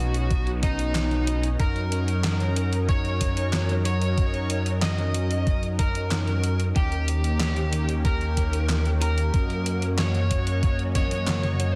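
A smooth, overdriven electric lead guitar carries the melody in this uplifting, nostalgic synthwave excerpt, its picked lines trailed by delay and a shimmering reverb. The groove moves at a straight 93 BPM in 4/4, anchored by a dark, rumbling detuned saw bass that sits up front with tube saturation and sidechain pumping. A thumpy, overdriven electronic kick joins a gated 80s digital drum machine that supplies handclaps, hi-hat, snare and toms, both re-recorded in a large room, with the machine's snare bursting through gated reverb. Behind them, a lush unison pad sustains the chords Badd9, F#6, D#7 and F#, while mellow, round synth brass stabs and a soft, pure FM bell with a vintage warble drift in the background through chorus and shimmer reverb. A drum fill at 11.3 seconds closes the passage, and the whole mix is dense and heavily limited.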